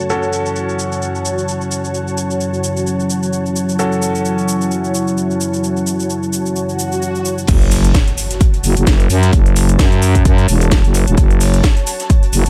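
This gritty, aggressive bass house excerpt opens on a deep, moody analog pad holding sustained chords with chorus and a sidechain pump, beside clear, worn grand piano stabs trailed by digital delay. A house drum kit with a cracking snare, metallic hats, cabasa and crash cymbal sits behind a low-pass filter, while an ethereal, airy pad adds a texture with built-in reverb, and a filter sweep moves through the analog pad. At 6.8 seconds an electronic swell rises in the background, and at 7.5 seconds the piano stops as the drop lands with an impact. A growling, thick FM bass enters up front with sidechain pumping, alongside a punchy, tape-warm electronic kick. A very quiet acoustic jazz kit with a smooth, rolled-off hi-hat and snare adds a faint small-room layer, all under a light digital ambience.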